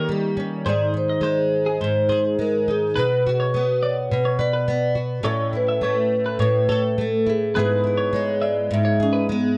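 Cut from a longer piece, this easy-going, heartfelt acoustic pop passage in straight 4/4 opens with its four parts sounding together over a D#7 chord. A ringing vibraphone, played with soft mallets and colored by a slow motor vibrato, carries the mellow, metallic melody through plate reverb and a digital delay. Up front, a bright, boxy flamenco guitar is fingerpicked and double-tracked as the main accompaniment, while a clean, compressed twelve-string electric guitar picks warm arpeggios high in its register, bathed in its own plate reverb. A clear, polished baby grand piano sits in the background, dropping out at 0.7 seconds and returning at 5.2 seconds as the harmony moves through G#, Bm, A and E/G#. The production is dark and warm, with a moderate studio reverb lending the ensemble a sense of room.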